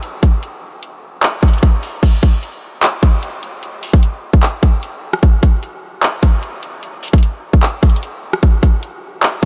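A trap drum kit sits up front with a hard-clipped kick, metallic hi-hats, handclaps, rim clicks and a crash cymbal, its electronic, produced sound carrying an eerie, dark mood. This hip hop drum pattern moves at 150 BPM in 4/4 with a half-time feel. Light reverb surrounds the kit, and the part shifts into a new section at 2.0 seconds, running until the cut at 9.5 seconds.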